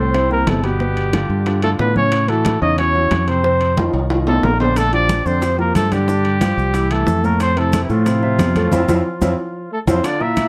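Trumpet with scooped notes and light vibrato leads up front over a breathy, distant trombone, baby grand piano and fingered electric bass, joined almost at once by close congas, round low-tuned bongos and ringing metal-shell timbales in a lively, danceable Afro-Cuban jazz excerpt, with grainy maracas slipping in at 4.8 s, drum fills, and a full-band accent from 8.7 s to 10.0 s, all in a dark production with light reverb.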